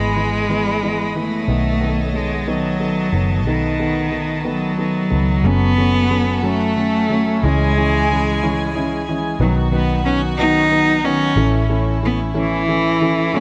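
In a slow, straight six-eight lilt at 61 BPM, this melancholic, aching pop ballad, cut from a longer piece, is led by a single bowed cello with vibrato, its focused, up-front voice carrying the melody through a touch of digital delay. Beneath it, a felt-muted upright piano adds mellow, intimate accompaniment, a round, foam-muted electric bass gives a dark, punchy low end, and a studio string section holds soft, floating sul tasto chords behind everything under light reverb. The harmony moves from E/G# to B7, then shifts into a second passage at 5.4 s that travels through F#m, C#m, B and A.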